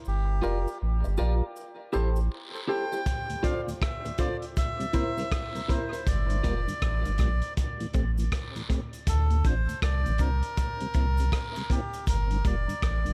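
A deep, round sub bass anchors this meditative, hypnotic dub reggae excerpt in D minor at 80 BPM, with a swung sixteenth feel, as a reedy, breathy melodica carries the melody through dub echo over a Gm7–Am7–Dm7–C7 cycle. Cabasa and guiro sit distant in the background, while a slightly broken-up electric guitar and a hollow, percussive organ stab with chorus fill the opening, the stab dropping out around 6.0 seconds and the guitar around 6.6. At 3.1 seconds a crunchy, gritty breakbeat kit of kick, hi-hat and rim click arrives up front, joined by a mellow tonewheel organ with slow rotary speaker, all in a studio reverb.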